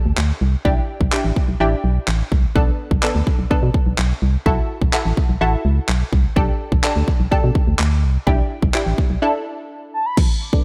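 A light reverb and digital ambience frame this short, energetic dance-pop excerpt at 126 BPM in a straight 4/4, with a confident mood throughout. Up front, an electronic, layered pop drum kit drives the groove with a punchy kick, a fat snare, handclaps and crash cymbal. Beside it, a hollow, dark, organ-like FM bass with a fast attack and decaying notes pumps through sidechain compression. Sitting lower in the mix, detuned sawtooth and square-wave chord stabs give a bright, filter-plucked accompaniment, treated with chorus, a low-pass filter and the same pumping effect. They move through A7sus4, Em7, Bm7, F#m7 and A7sus4/B before returning to Em7. The bass drops out at 9.2 seconds for a brief break, and at 9.9 seconds a round, horn-like synth lead enters with a soft attack, sustained vibrato, chorus and phaser, just before a drum fill at 10.2 seconds.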